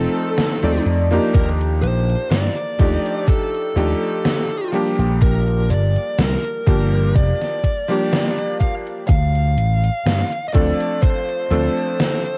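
Vaporwave in G minor at a slow 62 BPM, this short cut from a longer piece feels nostalgic and woozy, with a light swing on the sixteenths and a worn, warbling cassette haze over the digital ambience that makes the pitch drift. A fuzz lead guitar carries the melody between A4 and F5, distorted and compressed with tape echo. Up front, a bright, clangy electric grand piano plays the chords with chorused unisons, short sustain and its own tape echo, moving from F7 to Ebmaj9#11, then Gm7 at 5.2 seconds and Dm7. A punchy, amped vintage slap bass holds down the low end from F1 to G2 and drops out at 11.7 seconds. The gated 80s drum machine brings hi-hat and an overdriven snare drenched in gated reverb, while an overdriven, thumpy electronic kick drum enters at 1.3 seconds, both sounding re-recorded in a small room.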